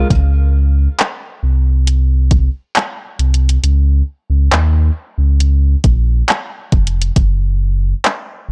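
A deep, full sub bass with an added octave opens this smooth, romantic contemporary R&B excerpt, its sine tone striking with a fast attack and then sustaining up front between F1 and Eb2. At 0.1 seconds an electronic, produced drum kit joins with a soft kick, handclaps and tape-warm hi-hats, sitting close in the mix and roughened by vintage 12-bit sampler grit. The unhurried groove in 4/4 has a straight feel that suits its intimate mood. The recording itself is dry, with little reverb, and sounds blown-out and overdriven, giving the sensual material a heavy, saturated edge. Both parts play through a single section, the drums stopping at 8.3 seconds and the bass carrying on to 8.5 seconds as the fragment cuts off.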